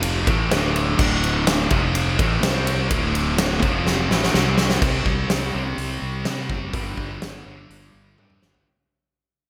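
A huge, punchy arena drum kit with a fat snare and gated reverb drives this anthemic, swaggering hard rock piece at 125 BPM, beneath a double-tracked, high-gain guitar riff cycling through D5, F5, A5 and C5 power chords and a growly fuzz bass, all set in a lush hall under bright 1980s-style digital production before a fade-out from 4.8 seconds with a drum fill at 8.2 seconds.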